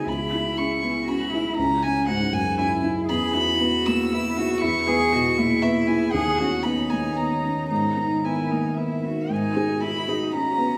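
A short excerpt, cut from a longer piece, is bathed in a lush large-room reverb, with one ensemble playing together live in a rubato three-time neoclassical setting full of longing and fragility. Up front, a felt-muted upright piano gives dark, intimate accompaniment with audible action noise beside a floating, pure sul tasto violin melody, while a solo cello adds an airy-bowed second line with light vibrato. Deep in the background, a detuned, chorused tape-like pad warbles with nostalgic lo-fi sustain, moving from C#m7 through E, Badd9/D# and G#madd9 before a new section opens on G#m7 at 9.3 seconds.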